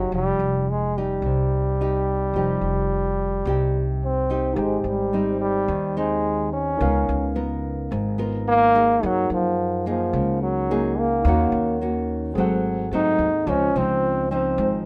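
An intimate, wistful bossa nova excerpt at 108 BPM opens with a clear, vintage jazz trombone singing the up-front solo melody over fingerpicked nylon-string guitar and a woody, thumpy pizzicato upright bass on gut strings. It moves from a Fsus2 opening into Ab major at 4.6 seconds, just after a bright, barky tine electric piano joins the accompaniment at 4.5 seconds, and continues through rich chords like Abmaj7, Db13 and Gb69 in a dry, close-sounding room.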